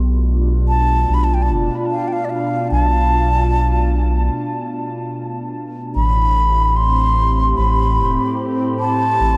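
A lightly swung 16th-note feel in 4/4 carries this spacious, meditative ambient dub excerpt, where a deep, round sub bass sits up front beneath a smooth, warbling analog pad with subtle chorus holding sustained chords from the start. A breathy wooden flute enters at 0.7 seconds with unsteady vibrato and lifted highs, its melody trailing dub echo through light reverb and studio ambience. After a break from 4.3 to 6.0 seconds, the harmony moves from Bm7b5 to Am9.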